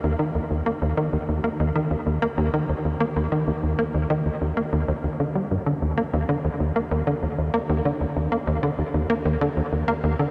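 Hypnotic and mysterious, this ambient excerpt features a lone sequencer bass, tight and punchy with a sawtooth and square-wave bite, ring-modulated filter plucks and a fast, decaying attack, sitting up front with subtle chorus and tape echo as it drives through a huge, dreamy reverb for its full 10.3 seconds.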